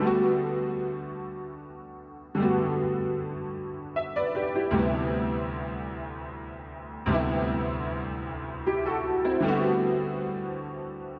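Sensual and tender, this short R&B excerpt in G major drifts at 51 BPM in a straight 6/8, with a clear, smooth grand piano playing solo and up front, its vintage tone and short sustain colored by analog chorus and delay, moving from Gmaj9 to D13sus4 at 4.7 seconds within a dreamy mix soaked in plate reverb before a new section arrives at 9.4 seconds.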